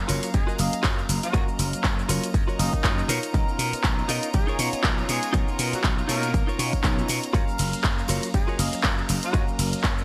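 A swung groove drives this short, sunny cut of filtered disco house, with an overdriven electronic kick sitting up front from 0.3 seconds and a layered house kit of handclaps, hi-hat, ride cymbal and shaker pumping against it under gated reverb. A very quiet, saturated tambourine adds a faint maracas-and-handclap shimmer, while a growly, punchy slap bass anchors the low end. A bell-like tine electric piano runs through a phaser for the accompaniment, and a twangy, picked clean guitar plays a compressed riff roughened by vintage 12-bit sampler grit. In the background, an earthy violin section holds bowed chords with light vibrato, and a tight pop-style horn section carries the melody in octave doublings, touched with delay and the same sampler grit. The harmony moves from F#maj7 to Bmaj9#11 and back. Light digital ambience and a bright 1980s-style production give the whole passage a feel-good, pumping lift.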